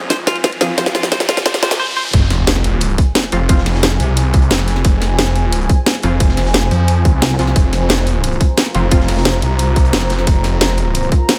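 Driving straight 4/4 at 177 BPM, this dark, mechanical slice of technical drum and bass in F minor rides on a tight, overdriven electronic kick set up front beside a layered kit with a cracking snare and hi-hats, while a very quiet, gritty breakbeat kit with a rolled-off top slips in underneath from 2.1 seconds. The opening build-up carries a drum fill, a riser and a clean, twangy electric guitar playing bright picked arpeggios through delay that end at 2.0 seconds, before the drop lands at 2.1 seconds with a sub-drop impact from the background effects. Holding the low end is a snarling, growling saw bass, distorted and compressed with a moving notch and sidechain pumping, joined for a brief moment at 7.2 seconds by a mellow, pulsing pluck wobble bass with chorus. Above it, punchy orchestra-hit-like synth stabs with ring modulation, a filter sweep and digital delay cut through, while a deep, moody ambient pad sustains Fm chords with chorus, reverb and a pumping breath. 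The mix sits in light reverb, with the bass and drums pushed forward and the pad sitting in the shadows behind them.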